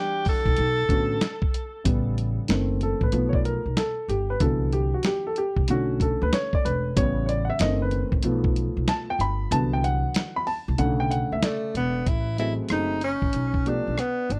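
A dark, vintage-toned grand piano sits up front and solos from 1.9 seconds in this smoky, mellow jazz-hop excerpt at 94 BPM in B minor, backed by gritty, compressed sampler-style drums whose thumpy kick is muted from 9.5 to 12.1 seconds, woody pizzicato upright bass, and a distant, vibrato-laden tenor saxophone with tape echo that opens and closes the passage, all set in a dry, close 1970s-style small room.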